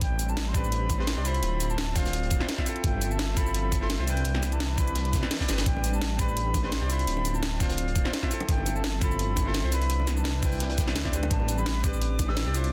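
A melancholic, rolling liquid drum and bass passage in A minor at 170 BPM opens with an airy silver concert flute melody. The flute carries vibrato and digital delay and sits distant over a smooth, warbling analog pad whose slow-attack chords breathe with chorus and sidechain pumping. Underneath, a deep, rumbling detuned saw bass sits up front, while a gritty, thumpy electronic kick anchors an overdriven drum and bass kit with a cracking snare, bright hats and shaker. Behind them, a dark, saturated breakbeat kit is tucked in the background, with high-pass filters on its hats, snare and room. A brilliant grand piano joins at 0.5 seconds, intimate and polished, with audible action noise and long sustain. After a drum fill at 5.4 seconds, round, low-tuned bongos played with soft hands enter far off at 5.8 seconds, as the Am11, Dm9, G13sus4 and Cmaj9 progression cycles with a light 16th-note swing under studio reverb and a dense, heavily limited modern master.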